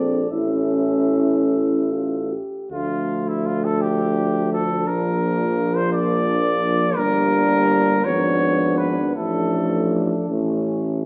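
Yearning and solemn, this short classical, hymn-like brass band excerpt in D minor moves in a rubato 6/8 at about 49-58 BPM: a soft-attacked, warm cornet sings the melody up front until 10.3 s over a mellow, roomy French horn section on the second line, a dark trombone, a euphonium with light vibrato sitting in the background, and a clear, vintage-toned tuba bass, all in a wet recital hall reverb, with a G#dim7 at 8.1 s darkening the harmony before it settles on A at 10.3 s.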